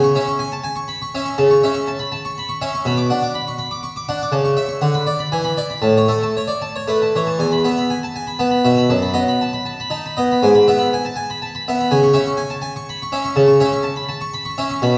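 A solo harpsichord opens at once on a C-sharp minor chord, playing a flowing, dance-like baroque-style suite movement in 3/4 at 122 BPM, with a rubato feel and a range from E2 to D6. The instrument is close-miked and up front, its dry, plucked Flemish-style tone full from two sets of strings, set within a concert hall's long, wet reverb and a slightly dull top end. Cut from a longer piece, the passage moves from A major into E major at 7.4 s and carries on to 15.0 s.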